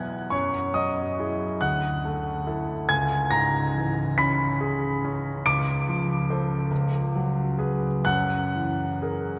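Classical impressionist solo piano in a luminous, dreamy 6/8 at a rubato 47 BPM by the dotted quarter, where a clear, intimate grand piano sits up front with its action noise audible, ranging from C#2 to D7 through sus2, add9 and minor-seventh colours such as F#sus2, Dadd9 and C#m7 before settling on F#9, all bathed in a long, wet cathedral reverb across this brief 9.4-second excerpt.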